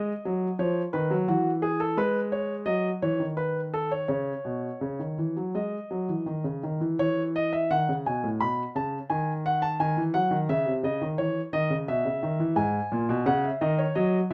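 A baroque-style classical two-part invention for solo grand piano, this short passage is cut from a longer piece and carries a contemplative, serious mood at a moderate 86 BPM in a straight 4/4. Set in C# minor and tuned slightly below standard pitch, with A at 437 Hz, the warm concert grand sits up front, its deep bass anchoring a range that runs from G#2 up to B5. The harmony moves from a rootless G# minor through C# minor, a D# diminished chord and B with an added ninth, settling on a bare G# fifth near 5.5 seconds. A second section begins at 7.0 seconds, returning to C# minor before passing through B and a G# seventh back toward C# minor and ending on G# minor. A moderate small-room reverb lends the instrument a close, intimate setting.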